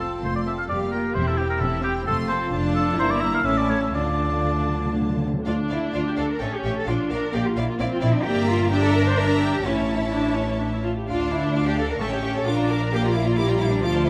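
Moderate concert-hall reverb gives this short excerpt from a classical-period symphonic movement a spacious, resonant sound. In a dramatic, restless triple metre with a rubato feel, a smooth, even violin section carries the melody high above a second violin line that sits lush in the background. An up-front oboe with a vintage tone adds its own second line, and a French horn section holds sustained chords; both fall away by about 5.2 seconds. Underneath, a distant viola section supplies the accompaniment, while an expressive cello section and an up-front double bass section anchor the bass. Timpani struck with hard mallets play an articulate fill from 4.0 seconds, marking the turn into the next section.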